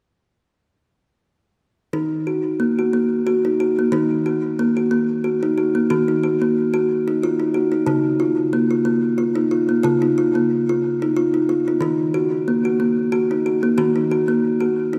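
Bathed in a moderate concert-hall reverb and a diffuse ambient delay, this hypnotic, meditative world piece at 91 BPM in a lilting, lightly swung 3/4 features only a woody, bright, ringing kalimba, plucked up front with a thumbnail, spinning arpeggios in Eb minor that enter at 1.9 seconds, shift to Db at 7.9 seconds and return to Eb minor at 11.8 seconds in this fragment of a longer piece.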